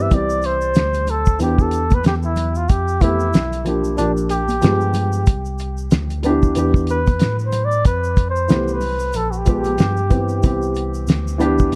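A lazy, swung groove in 4/4 sets this relaxed, smooth jazz-hop excerpt in motion, carried by a cloth-damped drum kit that sits up front with a thuddy, tight kick, a fat snare and hi-hat, all dry with a rolled-off top. The kick drops out briefly from 4.0 to 5.3 seconds, and tube shaker and congas stay in the background with a small-room, acoustic feel. A breathy flugelhorn takes the solo melody from the start, played in a jazz style with a soft attack, scooped notes and light vibrato, touched by analog delay, and it stops at 11.0 seconds. Beneath it, a dark concert grand piano gives up-front, vintage-sounding accompaniment with deep bass and short sustain, while a mellow tine electric piano holds down the bass line with a clean tone heard through its built-in speakers. The harmony moves through lush colors such as Em7, Fmaj9#11 and G7b9 before settling on Cmaj7. Light reverb and a small room ambience wrap the whole in a dusky, warm production.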